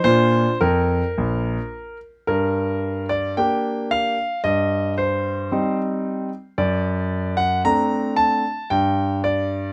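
Recorded close and in fine detail with light reverb, this short, graceful excerpt from a classical-period piano sonatina in G minor moves at 112 BPM in a straight 4/4. A clear, natural grand piano sits up front alone with long sustain, ranging from Bb1 to Bb5 across its elegant opening and the longer second section beginning at 2.3 seconds.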